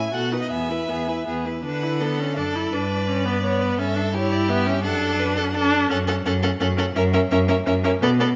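A moderate scoring-stage reverb surrounds this short cut from a quick, graceful and cheerful classical-period movement for string quartet in three, played with a rubato feel. The first violin carries the melody from a distance with a focused tone and vibrato, while the second violin plays a close second line beneath it; the viola, up front and warm, adds expressive accompaniment with portamento, and the rich, even cello holds the bass. The harmony moves from B7 and E to D at 1.6 seconds, then through G, A7/G and D/F# before reaching F#m.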